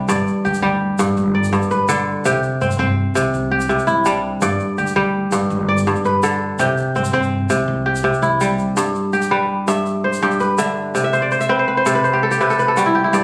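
Hypnotic and flowing, this excerpt of West African string and xylophone music moves at 110 BPM in 12/8 with a straight feel, alternating between G and C chords in G major. A crisp, ringing kora sits up front playing fingerpicked arpeggios, with a woody pizzicato upright bass underneath until 8.7 seconds and a grainy, bright egg shaker further back. In the second section the kora adds a fill from 11.0 seconds. The phone recording, made in the room, has a recital hall ambience, club reverb and compression.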